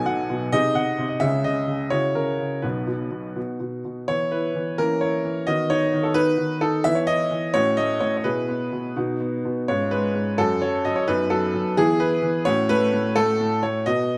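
Close, detailed microphones in a moderate recital hall reverb capture a clear, open baby grand piano with long sustain, up front and alone through this cheerful, elegant classical-period sonatina fragment in E major and 6/8 at 86 BPM, which moves from its opening phrase into a new section at 4.1 seconds.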